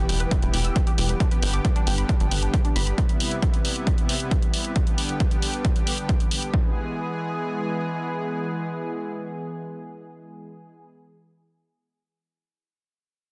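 A punchy, overdriven electronic kick drum sits up front in this driving, soaring uplifting trance piece, its layered sound carrying the air of a large room. Beside it, a dry, analog-flavoured electronic hi-hat adds a straight feel, and both drums drop out by 6.6 seconds. A tight sequencer bass built from sawtooth and square waves with ring modulation gives a mellow yet driving low end of fast, decaying notes with sidechain pumping, and it stops at 2.9 seconds. The unison pluck ends at that same moment, its detuned, wave-folded arpeggios sitting in the background under a filter sweep, with lush chorus, delay and pumping. A thick, airy, bright pad of detuned sawtooth voices holds sustained chords with a soft attack throughout, shaped by chorus and sidechain pumping as the harmony moves from Em through G and Cmaj7, back to G, and on to a closing E. A barely audible impact opens the clip, and light reverb sits over a dense, heavily limited modern master.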